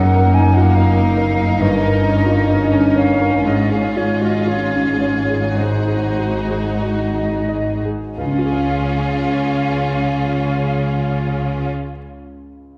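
Lyrical and lush, this romantic classical excerpt for piano and orchestra in Db major drifts in a rubato 4/4 at 42-75 BPM, slowing through its first 8.2 seconds as a polished, up-front grand piano carries the melody over a focused, vibrato-rich violin line in the background, an expressive second violin part, a pure, hollow, distant flute, a focused viola accompaniment, and a bass of smooth-topped cellos and soft-attack double basses, all bathed in a wet scoring-stage reverb before the piano sounds alone from 11.7 to 12.8 seconds.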